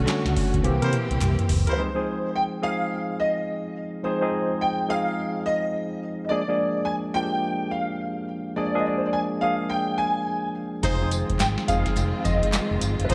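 A worn, slightly out-of-tune tine electric piano opens this punchy, bouncy new jack swing excerpt alongside lush, bowed symphonic strings, a round, foam-muted fingered bass, crisp, very quiet group handclaps and a booming analog drum machine with a deep kick, tonal snare and metallic hats, its gated-reverb drum fill joined by loose jazz horn stabs with delay. From 1.7 s an up-front concert grand piano with deep bass carries the swung R&B melody, treated with ensemble chorus and delay, over only the electric piano. At 10.8 s the strings, bass, drums and horns return, all under bright 1980s-style digital production and a moderate plate reverb.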